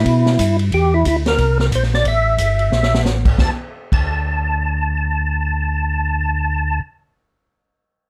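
Soulful and smoky, this short cut from a longer soul jazz organ trio swings in 4/4, with a percussive tonewheel organ carrying the melody in a fat, clicky voice coloured by third harmonic percussion, chorus vibrato and a slow rotary speaker, while a mellow, round tonewheel organ holds down the bass line through the same slow rotary. An acoustic big-band drum kit with a high-tuned snare and punchy kick drives the groove on ride, hi-hat and crash, drops a fill at 2.7 seconds, and stops at 4.0 seconds, leaving the two organs to finish on their own. The production is dark with light reverb, and every part sits up front.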